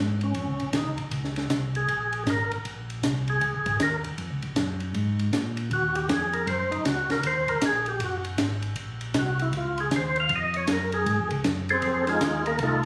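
Soul jazz organ trio with a swung, late-night soulful feel, in which a percussive tonewheel organ takes a fat, key-clicking solo with second harmonic percussion over a round, dark tonewheel organ bass line, both lightly overdriven through chorus vibrato and a slow rotary speaker, while a compact cocktail drum kit adds a punchy kick, high-tuned snare, hi-hat and ride, all caught on a phone in a small room with light reverb in a brief cut from a longer piece.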